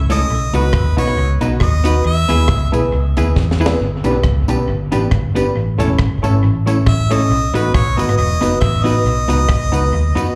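A lightly swung ska groove at 137 BPM drives this cheerful, joyful clip from a longer piece, with a deep reggae drum kit built on a tight kick, dry rim clicks, hi-hat and a high-tuned snare, plus a brief fill at 3.4 seconds, all carrying a dub echo. Underneath, a vintage muted electric bass played with the fingers sits up front, dark, round and foam-muted. A semi-hollow electric guitar supplies clean, compressed accompaniment coloured by phaser and slapback echo, while a worn, woody upright piano adds slightly detuned, boxy stabs with long sustain through dub and slapback echo. A close-miked harmonica carries the melody with light vibrato and a punchy pop edge, dropping out at 2.7 seconds and returning at 6.9 seconds, and a jingly tambourine echoes faintly in the background. The chords move from B through E and G to A and back to B, all heard as a live gig through the venue's PA with club reverb.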